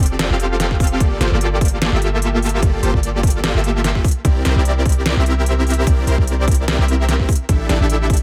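Lush and bright, this future bass passage at 148 BPM rides a swung, half-time feel as a huge, detuned supersaw riff with vibrato and digital delay pumps against a deep, boomy 808-style sine bass, a dubstep kit of deep snare and crisp hats adds tape-warm color, and a hard-clipped electronic kick punches in up front at 0.7 s, all over an F69, Gm9, C9 and A7sus4 progression in a digital ambience.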